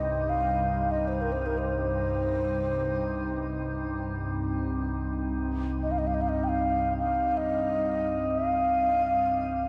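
Unfolding in free time, this haunting, spacious piece of meditative world music in C minor pentatonic sets a mellow, airy bamboo xiao melody up front with shimmer reverb and delay over a calm, detuned organ-like drone with ensemble chorus, while a glassy, ethereal glass harmonica adds shimmering texture, all three sounding throughout the 9.7-second cut inside a huge ambient reverb.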